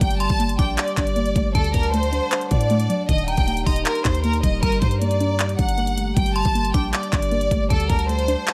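A lightly reverberant mix opens this brooding, hard-hitting trap excerpt, where a lush studio violin section carries the melody with vibrato and tape echo over a knocking electronic drum kit of bright hi-hats, handclaps and kick, all in a half-time feel. A punchy, heavy 808-style bass with a fast attack anchors the low end, while a warbly, dusty, lo-fi pluck with chorus and detuning fills out the accompaniment. A pure glass harmonica sustains glassy, ethereal chords, and from 0.2 seconds a metallic, inharmonic FM bell rings in the background through chorus, phaser and tape echo.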